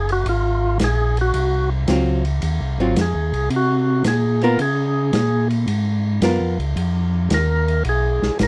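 This short, dry excerpt from a longer soul jazz organ trio piece sounds close and swinging, with a greasy feel at 111 BPM in 4/4 and Ab mixolydian. A percussive tonewheel organ carries the melody from the start, its full, clean tone marked by second harmonic percussion, key click and a slow rotary speaker, while the solo runs the whole 8.5 seconds. Beneath it, a mellow tonewheel organ plays the bass line, round and dark with chorus vibrato and its own slow rotary speaker, sitting up front. A vintage drum kit enters at 0.1 s on hi-hat, ride and a medium-tuned snare, its dark cymbals and rolled-off top caught in a small, pumping room. An archtop guitar, miked and amplified, adds hollow-body, picked accompaniment from 1.9 to 6.6 s as the harmony moves from Ab13 to Db13.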